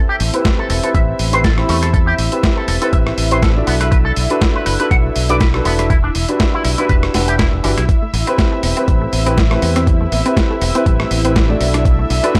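A swung 121 BPM nu-disco groove in 4/4 opens this cosmic, groovy cut from a longer piece in A dorian, built on an overdriven, thumpy electronic kick that sits up front alongside a dusty soul sampler-style kit of hi-hat, rim click and gritty, medium-tuned snare. A punchy fingered electric bass with an envelope filter and transformer saturation drives the low end from E1 to E2, bright and up front. A twangy, clean electric guitar, also run through an envelope filter with subtle chorus and analog delay, plays a riff until 7.8 seconds, and at 7.9 seconds a detuned sawtooth unison pluck enters in the background with tape-echoed arpeggios. Underneath, a dark, mellow grand piano carries the accompaniment with long sustain, a filter sweep and sidechain pumping, while a lush, warbling vintage pad holds sustained chords that pump in time. The chords cycle through Am9, Bm7 and Em9 in a dry, gritty hardware recording with light reverb.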